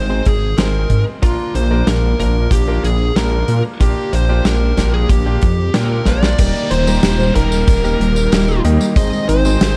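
Nostalgic and moody, this synthwave excerpt moves at 93 BPM in a straight 4/4, with a distorted fuzz lead guitar carrying the melody through tape echo over stabs from a bright, brilliant baby grand piano, a thick detuned saw bass with chorus sitting up front, and a hall-toned arena drum kit with bright cymbals, a tambourine and a punchy kick in the background. After a drum fill at 6.1 seconds, the second section opens at 6.4 seconds, bringing in a lush unison pad pumping with sidechain, soft round plucked arpeggios through digital delay, and a distant electronic downlifter, with a dreamy, very quiet FM electric piano adding a second line from 6.7 seconds. The chords move from Ab through Bb and Gm7/Bb to Eb before returning to Ab, all set in a dark, warm small-room production.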